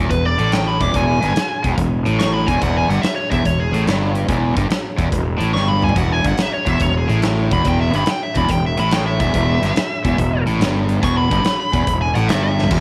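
Blues rock power-trio riffing with a southern rock swagger, this raunchy swung excerpt pairs a bright, double-tracked cranked stack guitar riff and a growly fuzz bass with a dark, smooth overdriven lead guitar melody, all driven by a huge arena drum kit with fat snare, punchy kick and bright cymbals that throws in fills at 5.6 and 12.5 seconds, set in a small room ambience.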